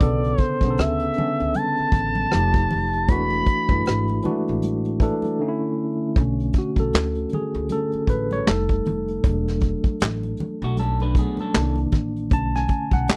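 A smooth sawtooth lead with vibrato, portamento and chorus sings the melody up front until 4.6 seconds, over a bright, clean tine electric piano, woody pizzicato upright bass, a dark brush kit with handclaps and rim clicks, and thin-skinned congas in the background, before the electric piano takes a solo from 6.2 seconds and a slightly broken-up guitar through a small old amp adds a brief second line at 10.6 seconds in this dry, close, late-night neo-soul excerpt with a light swing on the 16ths.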